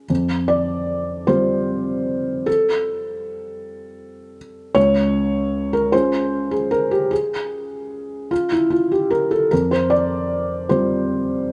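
A felt-muted upright piano plays alone in this short, intimate and hopeful neoclassical minimalist piano excerpt, its dark, thick-felt tone sitting up front with audible action noise, a slapback echo and light reverb as it moves rubato in 6/8 through Fadd9, Db and Fsus2 chords.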